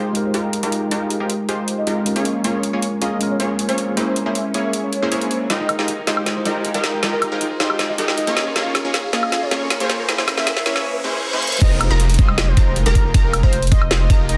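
Future bass in a half-time feel, emotional and lush, this excerpt from a longer piece spends its first 11.6 seconds building under filter sweeps as a velvety, chorused synth lead sings over up-front punchy supersaw stabs, a thick saturated sub bass, a mellow tine electric piano that stops at 5.5 seconds, a ringing concert harp roughened by 12-bit sampler grit, a trap kit with a woody snare and metallic hats, and very quiet risers, reverse cymbal and downlifter, until the drop brings in a knocking electronic kick and a bright unison pluck, with the tonal parts pumping to the sidechain inside a dense, heavily limited master.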